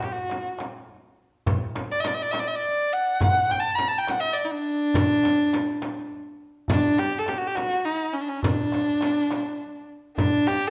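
Persian modal ensemble music in 6/8, festive and warm in mood, cut from a longer piece. A single bowed kamancheh carries the melody up front with a clear, focused tone, vibrato and gliding portamento, while a tight tombak played with soft hands and a small, bright frame drum sit lower in the mix beneath it. All three play throughout, with the music moving into a new section at 6.7 seconds, and the whole ensemble rings in the generous reverb of a recital hall.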